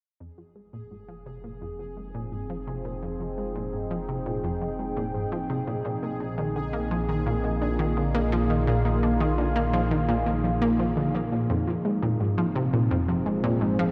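Hypnotic and cosmic, this excerpt from a longer piece of ambient, sequencer-driven space music moves at 85 BPM in a straight 4/4, set in F minor. Up front, a round, detuned sawtooth analog pluck plays a riff with a fast attack and decaying tail, its chorus and tape echo adding sheen, while a sweeping resonant pad holds evolving, detuned sawtooth chords that bloom slowly through a filter swell. Beneath them, a deep sine sub bass sustains low notes, and from 0.8 s a pulsing, tempo-synced gated texture of detuned triangle tones in unison hovers in a narrow upper band, carrying chorus and its own reverb. The pluck, pad and sub bass all fade in over the opening stretch, which moves from Fm7 to Bbsus4 before a brief closing section returns to Fm7 at 11.5 s. The whole mix sits in a vast, echoing space, drenched in a wet cathedral reverb with a long 6.1-second decay.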